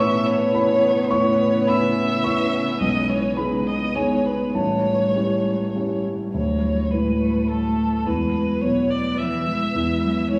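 Neoclassical piano and strings, this tender, intimate passage moves in a rubato 3/4 at 106 BPM, tuned to A4 = 443 Hz, and is cut from a longer piece. A felt-muted upright piano sits up front with a soft, mellow, natural tone, spanning A1 to C#6 in accompaniment. Over it, a single con sordino violin carries the melody between A4 and E5, its dark, veiled sound bowed with vibrato and a smooth top, while a muted cello adds a second line from E3 to B3 with lighter vibrato. From 0.2 seconds a granular cloud pad holds sustained chords in the background, blurred, detuned and full-bodied, with a slow attack, long release and its own built-in reverb. The harmony drifts from Aadd9 through B6 and A7, turning at 6.3 seconds to D6, E and C#m/E, all heard in a wet, church-like space with a 1.6-second reverb tail.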